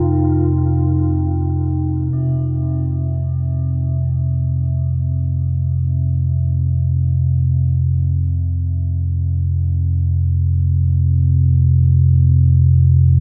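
A deep, rumbling drone sits up front from the first moment, moving between F2 and C3 on an F5 chord, its wave-folded, warbling tone carrying a vintage, ominous weight and its own built-in reverb. This fragment of a longer dark ambient drone piece unfolds in free time, tuned to A4 = 438 Hz, with a cavernous mood. At the opening, a mellow, horn-like synth lead briefly holds an F4, round and softened by analog chorus and vibrato and trailed by a diffuse ambient delay, before it stops at 1.6 seconds. A bronze singing bowl rings between C4 and Eb4 throughout, metallic and close-miked, its slow beating lending a meditative shimmer, and it fades in from 2.1 seconds to the close at 13.2 seconds. A huge ambient reverb with an 8.2-second decay surrounds the sound, deepening its sense of vast, shadowy space.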